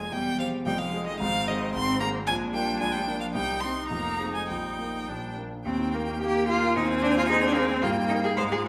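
A quick, graceful and spirited classical-period movement for piano quartet in Eb major at 110 BPM in a rubato 2/4 opens with all four players together, the focused, vibrato-laden violin carrying the melody while the expressive cello sings a second line with portamento and soft attacks, the smooth, distant viola and the up-front concert grand piano, deep in the bass, fill out the accompaniment, harmonies pass from C/E through Fm7 to arrive on Eb at 5.7 seconds, and a resonant church or concert-hall reverb surrounds this brief cut from a longer piece.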